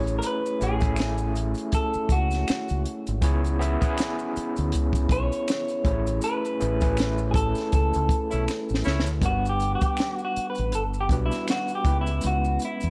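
A dark, slightly broken-up electric guitar through a small old amp carries the melody up front with spring reverb, turning to a clean solo at 9.2 seconds in this relaxed, sensual R&B and neo-soul piece at 80 BPM in A major with a swung sixteenth feel. Beneath it, a barky, gritty tine electric piano with fast tremolo plays the chords, a round, deep dub fingered bass holds the low end, and a compact cocktail kit offers a punchy kick and high-tuned snare, with faint maracas and finger snaps in a small room. A band accent arrives at 6.2 seconds, a distant, loose horn section adds brief stabs at 8.3 seconds, and a drum fill follows at 8.5 seconds, all framed by studio reverb.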